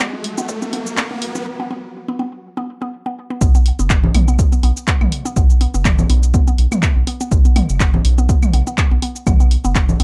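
Minimal techno at 123 BPM with a light swing, sparse and clinical in mood, with a dark, dry production: a punchy analog kick and a drum machine of handclaps, hi-hat and shaker run throughout beneath a round, nasal analog bass that pumps against the kick, while a woody, mallet-like FM synth pluck carries the riff through chorus, phaser and dub echo. An up-front riser and a flickering, grainy background texture open the excerpt, and a filter sweep on the synth arpeggio shapes the build-up and break before the drop at 3.4 seconds. Tape-tinged electronic congas, toms and claves, set in a large room, enter at 4.0 seconds.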